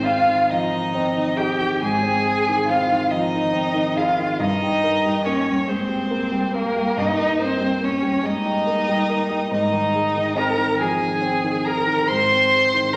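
A wet recital hall reverb surrounds this serene, lyrical passage, cut from a longer slow romantic movement for piano trio in Ab major. It moves at a rubato 47 beats per minute, counted in dotted quarters, in 12/8. A single bowed violin carries the melody with a rich, smooth and even tone and vibrato, reaching as high as C6. A bowed cello shapes an expressive second line with vibrato and portamento, sitting slightly louder than the violin in the blend. Up front, a warm concert grand piano supplies the accompaniment with deep bass, and all three instruments play throughout the 13 seconds as the harmony moves from Ab to Eb/G at 4.4 seconds and back to Ab at 9.5 seconds.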